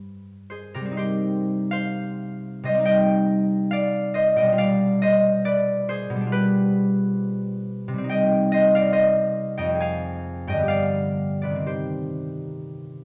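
A bright, ringing concert harp plays alone and up front in this wistful, gentle classical excerpt in C minor, its fingerpicked lines spanning F2 to D6 at a rubato 67 BPM in 4/4, moving through Cm, G7/B, Fm and G7 before settling back on Cm, all set in a dark production with moderate recital hall reverb.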